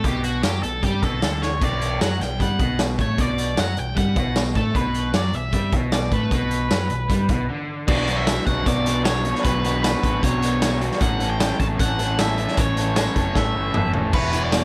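Bittersweet and restless, this indie rock excerpt in B minor drives at 153 BPM, with a biting, bright overdriven lead guitar carrying the melody through slapback echo and plate reverb over a crunchy, double-tracked rhythm guitar riff, a dark, round fingered electric bass, and a raw garage drum kit that sounds gritty and saturated in a pumping small room, marked by drum fills at 1.4 and 13.4 seconds and a brief break at 7.5 seconds before the harmony shifts from Bm to Bmadd9, A and Esus2.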